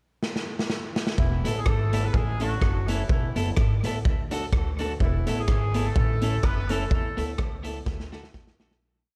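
A swung ska beat at 126 BPM drives this cheerful, upbeat piece in E mixolydian: a gritty, punchy garage drum kit with a side-stick backbeat opens with a fill, then a woody, growly pizzicato upright bass walks in at 1.2 seconds alongside distant, roomy horns playing hook phrases in octaves and thirds with analog delay, while a slightly broken-up electric guitar and a boxy upright piano chop the off-beats through their own analog delay, within a dark, dry production that fades out from 6.9 seconds.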